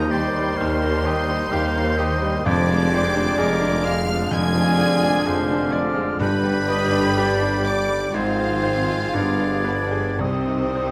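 Heard in a moderate recital-hall reverb, this brief, tragic and passionate romantic movement for piano and orchestra unfolds with rubato as a clear grand piano in the background and a rich, close violin section carry the melody, while a bright oboe, airy silver flute, quiet clarinet and a second, lush violin section weave second lines over a mellow bassoon and violas, soft French horns and distant trombones holding chords, cellos, double basses and tuba anchoring the bass, and hard-mallet timpani entering at 6.2 s before a short fill at 10.2 s.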